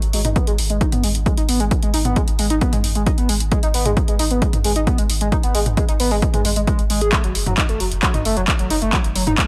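Driving peak-time techno at 133 BPM in a straight 4/4, this short cut from a longer piece sits in G# phrygian and feels intense and industrial, moving from G#m to F#m at 7.1 seconds. A saturated sub bass, deep and thick with a triangle tone, holds between F#1 and G#1, pushed by overdrive, sidechain pumping and a low-pass filter. A punchy analog drum machine sits up front with overdriven handclaps, hi-hat and toms, joined at 0.4 seconds by an overdriven electronic kick with a punchy thump. Over this, an overdriven synth lead plays a riff from F#3 to G#4, its gritty, guitar-like, screaming timbre built from sawtooth, pulse and triangle waves that are wave-folded and saturated, with vibrato and a bright, forward presence. The lead runs through tube saturation, analog chorus, sidechain pumping and tape echo while a filter sweep shapes it across the whole passage, all set in a digital ambience.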